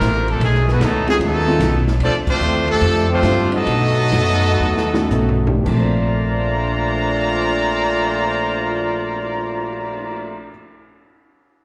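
A swung 4/4 pulse of 105 to 150 BPM drives this energetic big band excerpt in Bb major, where a bright, up-front trumpet section carries the melody over a dark, roomy trombone section, a thumpy pizzicato upright bass, a very quiet clean archtop guitar, a smooth drum kit with dark cymbals and a boomy kick, and an intimate, slightly detuned upright piano entering at 1.1 seconds, all heard live through a venue's PA as the band slows from 2.0 seconds, hits an accent at 2.2, and rides a drum fill into a new section at 5.7.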